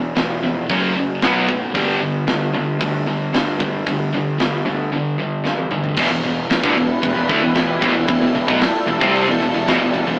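Two picked electric guitars open this aggressive, relentless heavy metal passage in E minor at 114 BPM in a straight 4/4: a dark, sludgy overdriven guitar sits up front while a high-gain distorted guitar adds a brighter edge from the background, both grinding through a riff over chords moving from E5 through F#5, B5 and G5. Beneath them, a fingered electric bass with growly fuzz and punchy overdrive fills out the low end from the background. A tight metal drum kit enters at 0.2 seconds, acoustic, airy and polished, with bright cymbals, a medium-tuned snare and a tight kick placed up front in a big room, and it drives a fill into the second section at 6.0 seconds. There a sweeping, resonant pad arrives on an E minor chord, its detuned sawtooth and sine layers rising through a slow attack and filter swell with chorus and a long release. The whole clip, cut from a longer piece, has the rough feel of a rehearsal-room recording, colored by tube saturation, an AM-radio sound and light reverb.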